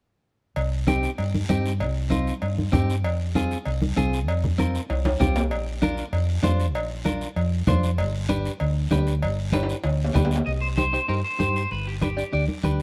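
Cumbia with a fiery, danceable drive, opening on a round, dark hollow-body bass, raspy guiro, and a ringing, saturated cowbell and timbales from 0.6 seconds, joined by bright, hard-hit congas and a clean, scooped picked guitar accompaniment. The cowbell and timbales drop out at 10.4 seconds, near the close of the second drum fill. At 10.5 seconds a twangy lead guitar at the edge of break-up, bathed in spring reverb, takes the melody up front over the C minor harmony. The mix sits in light reverb, and the passage is cut from a longer piece.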